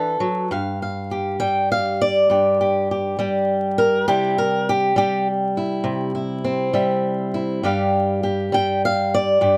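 A dry, closely miked sound with fine detail and a layer of vinyl crackle opens this short excerpt of soulful, swaggering acoustic country blues, rolling along at 67 BPM in 12/8. A single fingerpicked, swing-style steel-string acoustic guitar carries everything from 0.0 to 9.6 seconds, its boxy tone sitting up front and spanning G2 to G5. It moves from a rootless D through G5 and C before landing on G7 with its third omitted.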